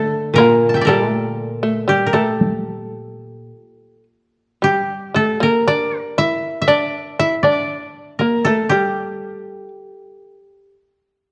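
Worn, warbling cassette tape with drifting pitch colors this short cut from a longer piece of Japanese chamber music, set in a moderate recital-hall reverb. At a rubato 59 BPM in A, the mood is austere and calm: an up-front koto, plucked with fingerpicks and sounding dry and woody, carries the melody, while a bright, buzzing, plectrum-plucked shamisen plays a powerful second line below it. A lower koto accompaniment is heard only until 3.5 s, and a taiko ensemble struck with heavy sticks sounds briefly from 0.4 to 2.7 s.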